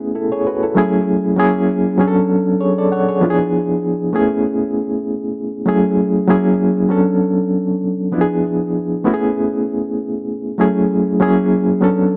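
Cinematic and smooth, this soul excerpt moves at 98 BPM in 4/4 with a gentle sixteenth-note swing, carried by a lone electric piano playing throughout its 12.2 seconds. The reedy, barky keys sit up front, lightly overdriven and pulsing with a fast tremolo as if heard through built-in speakers, while the chords cycle from Amaj9 through F#m9, F#7, Bm9 and E7b9. A wet small-room reverb and a dark, warm production round off the piano's bright edge.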